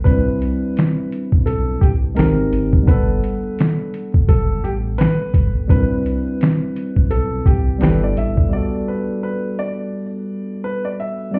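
This lo-fi hip hop excerpt moves at a relaxed 85 BPM in 4/4 with a swung sixteenth-note feel, settling into a dreamy, mellow mood in G major. A felt-muted upright piano carries the melody in a soft, intimate voice, its low-passed tone shaped by thin felt and the audible noise of its action. A barky tine electric piano supplies bright, clean accompaniment, colored by cassette tape and a low-pass filter. Beneath them, a deep sine sub bass with an octave holds full, sustained notes. A compressed, pitched-down sampler-style kit of finger snaps, hi-hat, thumpy kick and medium-tuned snare sits up front, while the harmony drifts through Cmaj7, Abmaj7, Gmaj7 and G6. By 8.5 seconds the bass and drums have stopped, leaving the two pianos alone until the cut at 11.4 seconds, all heard muffled as if through a wall, with club reverb and vinyl crackle around them.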